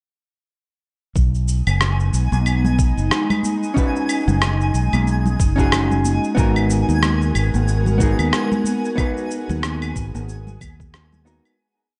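A blissful, relaxed sunset chillout groove opens at 1.2 s with a syncopated fingered electric bass riff up front, a soft, thumpy, gritty electronic kick and a light lounge beat of shaker, claves and rim click with a tape-warm, large-room character, swung on the sixteenths over a B6 chord. An ethereal, detuned pad with chorus, phaser and reverb drifts in beneath a sparkling granular high note, while close, dry congas sit in the background and a dark, clean hollow-body jazz guitar adds held rootless chords with syncopated pushes through a delay from 3.7 s. The harmony moves to G#m9 at 6.4 s, and the whole piece fades out from 8.1 s.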